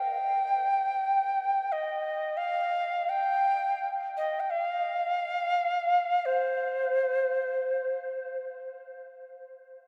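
World meditative music in free time and C minor pentatonic, this spacious excerpt features a mellow Native American-style cedar flute playing solo from 0.0 to 8.4 seconds between C5 and G5, its airy wooden tone carrying vibrato, a crisp chiff on each attack and rolled-off highs, set up front with delay inside a vast, echoing cathedral reverb.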